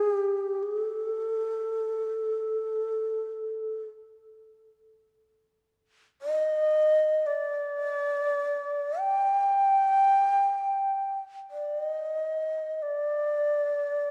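The recording has the worn, warbling character of old cassette tape, its pitch drifting unsteadily, and it sits in a moderate church-like reverb that lingers for about 3.4 seconds. This is a short fragment of Japanese traditional chamber music, calm and austere in mood. A single long shakuhachi plays alone from 0.0 to 14.1 seconds, moving between G4 and G5. Its end-blown bamboo voice is breathy, with a soft attack, straight tone and lifted highs, and it sits up front in the mix. The spare solo line and the aged, wavering tape sound together give the passage a hushed, weathered intimacy.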